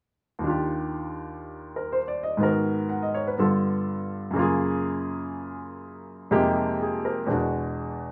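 A clear, up-front baby grand piano opens at 0.4 seconds with a natural, short-sustained tone, comping through lush extended chords like Ebmaj7, Abm7 and Gbmaj7 in a warm, sophisticated swung jazz excerpt at 123 BPM, set in a moderate studio ambience and ending at 8.1 seconds.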